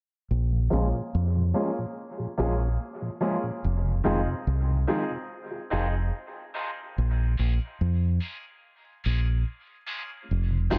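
Spacious and heavy, this short reggae passage at 72 BPM in Bb minor rides a round, punchy fingered dub bass up front from 0.3 seconds. A soft, flute-like tonewheel organ sits very quiet underneath with slow rotary vibrato, while a slightly broken-up picked electric guitar and brilliant, short-sustained grand piano stabs, both filtered and trailed by dub echo, move over Bbm7 and Fm7 chords beneath a filter sweep in a dark, light-reverb mix.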